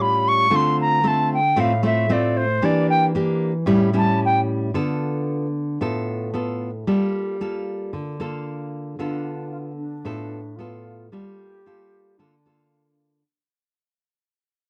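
The recording has a dark, intimate studio sound with a moderate, short reverb, and this short excerpt is cut from a longer bossa nova piece in D minor at 113 BPM in a straight 4/4. A reedy concert flute carries the melody up front, airy and tongued with vibrato and rolled-off highs, taking the solo lead over the first bars until 4.4 seconds. Beneath it, a fingerpicked nylon-string guitar in a classical acoustic style holds the accompaniment throughout, also close and present, moving through chords such as A7b13, Dm7, Em7b5 and A7 before settling into a Dm6 to Gm9 sway. As the music fades out, an alto flute enters at 9.0 seconds with a soft, close-miked second line in its lower register, airy and vibrato-tinged. The mood is melancholic and intimate, with a gentle, warm glow to the whole production.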